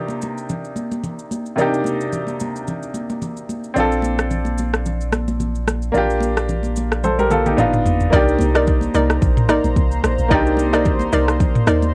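A clear, up-front baby grand piano opens this soulful, deep amapiano excerpt on a Cm9 chord, with an electronic afro-pop drum kit (deep kick, rim click, shaker and toms, carrying a cassette-tape colour) and damped, high-tuned acoustic congas joining at 0.1 seconds. The groove sits at 110 BPM in 4/4 with a light swing on the sixteenths, set in C dorian, and the whole has the light reverb of a home cassette recording. A round sine sub bass arrives at 3.8 seconds as the harmony moves through Bbmaj9 and Bbmaj13 to G7b13, and a drum fill leads into the next passage. At 8.1 seconds the music returns to Cm9 and fills out: a dark, percussive log drum bass comes up front, a smooth sawtooth pad with chorus pumps against the sidechain, and a hollow, bouncy square-wave pluck with chorus and analog delay adds stabs. The fragment is cut from a longer piece.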